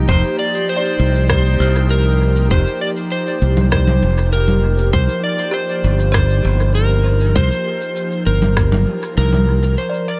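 Ambient dub at 99 BPM, spacious and deep, cut from a longer piece, where a growly, punchy fingered electric bass sits up front beneath a dark, slightly broken-up slide guitar melody with dub echo, an airy, breathy pad holding Fsus2 then Cm7 with chorus and vintage 12-bit sampler grit, warm, woody kalimba arpeggios, a very quiet bubbling resonant filter texture, and tape-warm electronic cabasa, rim click and congas with dub echo over a tight electronic kick that drops out at 8.7 seconds, all in a dry mix.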